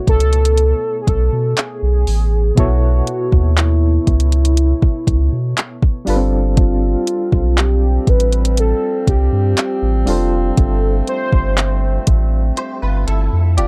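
Romantic and dreamy, this contemporary R&B excerpt moves at a slow 60 BPM in a straight 4/4, its harmony resting on B9sus4 before shifting to G9sus4 at 6.1 seconds. A velvety, detuned synth lead carries the melody with chorus, vibrato and digital delay, while soft electric-piano-like synth keys with chorus and tremolo supply gentle, decaying accompaniment throughout. Underneath, a round sine sub bass sits up front beside a smooth electronic drum kit of soft kick, hi-hat and handclaps with a tape-warm character. A mellow woodwind section enters at 6.6 seconds with distant, roomy sustained chords and light vibrato. Near the close, a drum fill arrives as a bright, twangy clean electric guitar, recorded direct and compressed, adds picked arpeggios with ensemble chorus and digital delay from 12.6 seconds. The production is dark and dry, with little reverb.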